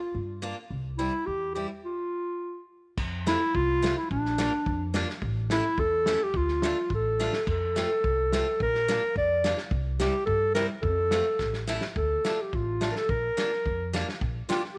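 A mellow clarinet in a classical style leads this festive, bouncy alpine folk dance tune, sitting up front as the solo melody voice. The fragment moves at 106 BPM in 2/4 with a straight feel in F major. A woody, growly pizzicato upright bass and a bright, picked steel-string acoustic guitar join almost at once, then the band breaks off into a stop at 1.8 seconds. At 3.0 seconds a vintage drum kit enters, recorded in a small room with a punchy kick, a medium-tuned snare and dark cymbals under a rolled-off top. The kit plays a fill at 11.4 seconds, leading into a new section before the piece is cut off, and the whole recording is touched by light reverb.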